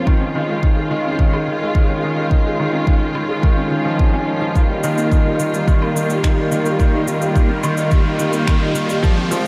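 Soaked in a huge, dreamy reverb, this short cut from a longer piano and strings electronica piece builds throughout with a moving, hypnotic mood. A woody, slightly detuned upright piano sits up front playing a riff through analog chorus and delay, over distant, lush bowed strings holding sustained chords with sidechain pumping, while a deep, tape-warm electronic kick, faint woodblock, shaker and finger snaps, and a barely audible detuned saw bass rumble beneath. The harmony moves from Dbadd9 to Ebadd9 at 4.6 seconds, and an electronic riser enters at 7.0 seconds to push the build-up.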